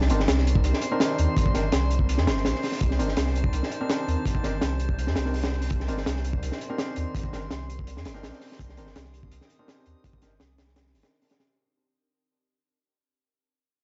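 A crunchy, gritty breakbeat kit with a tight kick and high-tuned snare drives this frenetic, dark jungle and drum and bass excerpt in straight 4/4, sitting up front beside a deep, thick, saturated sub bass. Behind them, an ethereal sawtooth pad holds a sustained Cm9 chord through ensemble chorus and reverb under a filter sweep, while a mellow concert grand piano plays low-passed stabs with dub echo and a calm, glassy harmonics texture drifts on top. The whole passage fades out across its 11.5 seconds, with a dry, gritty hardware sound, vinyl crackle and light small-room ambience.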